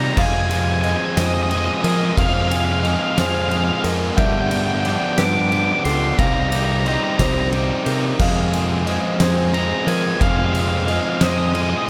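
A dark, fuzzy octave lead guitar carries the melody from the first second over two picked, overdriven guitar riffs, one raw and bright with slapback echo and one crunchy and set in the background, while a growling, overdriven fingered bass anchors the low end. At 0.2 seconds a soft, felt-muted upright piano adds intimate, vintage arpeggios touched with echo and delay, and an oversized, low-tuned drum kit arrives up front with a fat snare, boomy kick, crash and ride in a gritty, pumping stone room. This cathartic, melancholic post-rock fragment in F minor moves at 60 BPM in a slow 6/8 through Fm7, G7 and Cm7, set in a lush hall reverb with a big arena sound.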